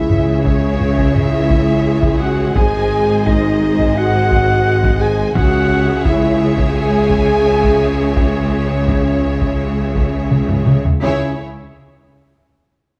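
Dark and relentless, this cinematic orchestral cue is cut from a longer piece and moves over a C# minor to G# progression. Lush bowed violins carry the melody with vibrato and a soft attack, a second violin line sounds distant and even, and a pure, crisp silver flute sits in the background, while violas with portamento fill the middle and dark, roomy French horns hold sustained chords. Beneath them, a mellow, punchy tuba joins cellos and double basses on the bass, and a vintage, band-limited taiko ensemble struck with hard sticks drives throughout, ending in a drum fill from 10.3 to 11.0 seconds, all captured with close, detailed microphones and light reverb.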